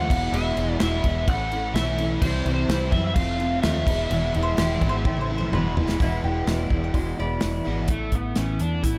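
A dark, overdriven slide guitar carries the melody in this jangly folk rock and heartland rock excerpt, colored by a subtle chorus and analog delay. Beneath it, a full-bodied jumbo steel-string acoustic guitar is picked as accompaniment. A double-tracked, crunchy electric guitar plays a riff through an ensemble chorus and drops out at 7.9 seconds as the harmony lands on Asus2. A foam-muted fingered electric bass and a polished, airy country drum kit with a punchy kick and medium-tuned snare hold the straight 4/4 pulse, and the kit plays a fill from 5 to 6 seconds. A woody, double-strung mandolin enters at 4.4 seconds with a second line touched by analog delay. The chords move through E, A, C and F before returning to E, and the whole mix sits in light reverb and small room ambience.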